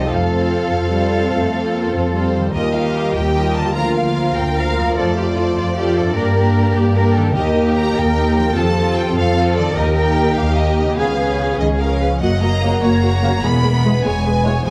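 A rolling 12/8 pulse carries this heroic, triumphant adventure film cue, where a focused, lush violin section sings the melody over a second violin line, vibrato-rich violas, smooth cellos and up-front double basses with a rich, bowed weight. Mellow, roomy French horns hold sustained chords in the background while a ringing concert harp spins arpeggios. A very quiet timpani stroke lands at 7.3 s, and a clear trombone section adds soft sustained chords from 12.6 s as the harmony shifts toward unexpected colours, all set in a moderate recital hall with close, detailed sound.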